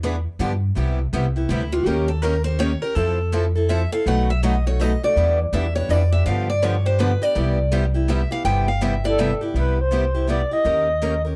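A bright, picked steel-string guitar takes the solo from 1.5 s, its finger squeak audible, over a swinging, charming gypsy-jazz waltz in 3/4 built on seventh chords. Two boxy parlour-style steel-string guitars pick the accompaniment, one up front and one in the background, while a woody, thumpy pizzicato upright bass on gut strings anchors the low end. At 9.1 s a reedy, detuned FM lead with a soft attack, vibrato and chorus takes the melody into the next section of this short fragment, all set in light reverb with a dark production.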